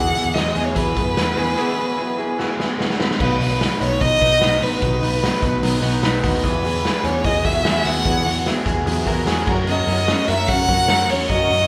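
Breezy and nostalgic, this short cut of jangly indie pop moves in a straight four with the feel of a band playing live together in one room, set in a moderate large studio reverb. A clear, focused solo violin carries the melody up front with vibrato, sounding slightly distant, while a raw garage drum kit with a punchy kick, medium-tuned snare, hi-hat and crash also sits up front, its rolled-off top giving a smooth, dark edge; the drums play a fill from 2.4 to 3.2 seconds. Underneath, a vintage foam-muted picked bass adds round punch, and in the background a fingerpicked plugged-in jumbo acoustic with fresh strings, a slightly broken-up lo-fi electric guitar playing arpeggios, and chorused retro synth keys with detuned sawtooth and pulse-width tones fill out the texture, the keys taking a short fill around 5.6 seconds. The harmony moves from Eadd9 to B, back to Eadd9, then to F#. A lush, very quiet string section enters at 9.7 seconds with sustained bowed chords.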